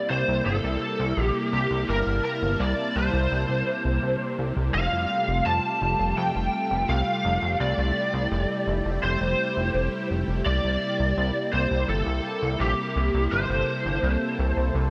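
A straight 4/4 pulse at 84 BPM carries this uplifting, dreamy synthwave passage in F major, cut from a longer piece and built on a single section. A chorused synth bass enters at 0.1 seconds, sitting up front with a retro, glossy character that blends pulse-wave and sawtooth tones, using pulse-width modulation and a filter sweep to keep its fast-attack, sustained notes evolving. Alongside the melody, a warm analog pad holds sustained chords in smooth, detuned sawtooth layers, its slow attack and moving notch colored by chorus. Up front, a lead guitar through a small cranked amp picks out the melody with a dark, lo-fi, overdriven bite, colored by ensemble chorus and digital delay. The harmony moves from C7 to Fadd9 at 4.7 seconds and back to C7 at 10.5 seconds, all set in a lush hall reverb with bright 1980s-style digital production.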